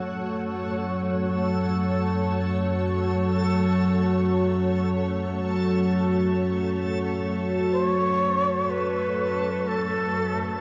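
A warbling, vintage analog drone with chorus sits up front in this unsettling dark ambient drone excerpt, beneath a blurred, detuned granular cloud pad holding sustained chords and a dreamy, reversed swelling texture as the synth texture fades in, until a breathy bamboo shakuhachi with vibrato and a crisp chiff enters at 7.7 s over the shift from F#m to Bm7/F#, its diffuse delay trailing into a vast, echoing space of huge reverb.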